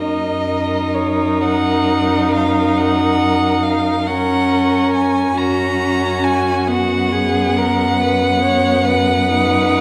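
Rubato phrasing in a lilting 12/8 gives this slow, romantic string quartet movement a tender, unhurried sway, heard here as a brief cut from a longer piece. The first violin carries the melody up front in a high register, its tone smooth and even with gentle vibrato. Beneath it the second violin shapes a soft-edged, expressive second line, sliding between notes with portamento. The viola fills in the accompaniment with a steady, silky sound, while the cello, close and focused with a rich, resonant depth, anchors the bass. The harmony shifts once, at 5.4 seconds, and the bowed quartet sits in a lush recital hall reverb that lends the whole a glowing, intimate bloom.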